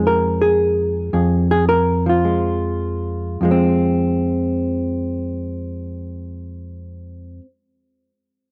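A hollow-body electric jazz guitar carries this short solo jazz excerpt alone, its clean, dark, fingered tone placed up front in a dry, close 1970s-style studio sound with little or nothing in the way of reverb. The mood is moody and late-night, set in F minor and 4/4 with a swung eighth-note feel at roughly 99 to 115 BPM. In the opening stretch the tempo slows, with the harmony resting on Fm7 before shifting to a plain Fm at 3.4 seconds as a second section begins. The guitar ranges from F2 up to Bb4 and falls silent at 7.5 seconds, leaving a brief stretch of silence before the cut from the longer piece ends at 8.3 seconds. The intimate, unadorned sound keeps attention on the hollow, dark character of the instrument.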